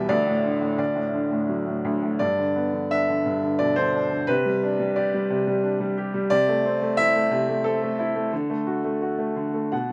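Moody and bittersweet, this short excerpt cut from a longer classical piece features a clear, woody upright piano playing alone in a lyrical 3/4 with uneven, rubato beats, its open tone and long sustain sitting up front in light reverb as the harmony moves from D through G, Csus2 and Am/C back to D, with a brief fill at 9.4 seconds.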